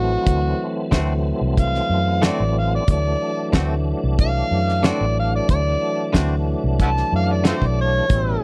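Soulful and gritty, this short clip of straight-eighth soul blues at 92 BPM in D mixolydian rests on a single D7 chord, with an overdriven harmonica soloing up front using tongue slaps, scooped notes and light vibrato over a full tonewheel organ turning through a slow rotary speaker with chorus vibrato, a round, punchy foam-muted electric bass, a dry 70s drum kit with a fat snare, tight kick and hi-hat entering at 0.3 s, and clean, twangy guitar stabs recorded direct arriving at 0.9 s, all captured in a close, small-room 1970s-style studio sound.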